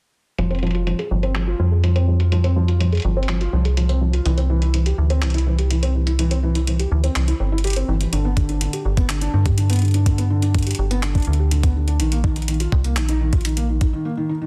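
This short excerpt of a longer IDM piece has a dense, heavily limited modern sound with a dry overall room, and its mood is intricate and melancholic. A felt-muted upright piano sits up front, playing dark, intimate arpeggios whose thick felt and audible action noise give it a vintage texture, while a low-pass filter sweep and dub echo shade its tone. Beneath it, a metallic FM bass with a fast attack and decaying, mellow notes underpins a progression of F5, C, G5 and Bbsus4. A gritty, tape-warm jungle sampler-style kit, pitched up and compressed, adds handclaps and hi-hat, with low-pass filtering on its hats and snare and a touch of studio reverb. At 8.4 seconds a thumpy, sampler-style electronic kick joins with its own reverb, and at 13.9 seconds the drums and bass drop out, leaving the piano alone in a brief break until 14.5 seconds.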